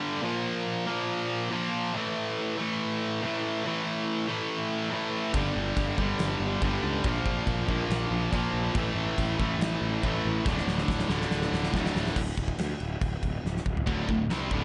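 This dry heavy metal passage, cut from a longer piece, has little reverb and its top end rolled off. It opens on a double-tracked, high-gain electric guitar alone, bright, picked and up front, playing an epic, relentless riff in D minor at 141 BPM in a straight 4/4 with a half-time feel, moving through Bb5 and A5 power chords. At 5.3 seconds the riff shifts to G5 as a growly, fuzz-drenched picked electric bass and a big acoustic rock kit enter together. The bass is punchy and overdriven, and the kit sounds dark and smooth in a big room, with a fat snare, a punchy kick, toms, crash and china cymbal. A drum fill at 10.5 seconds leads off the D5 chord before the band breaks into a short unharmonised stretch at 12.2 seconds, capped by another brief fill that lands back on D5.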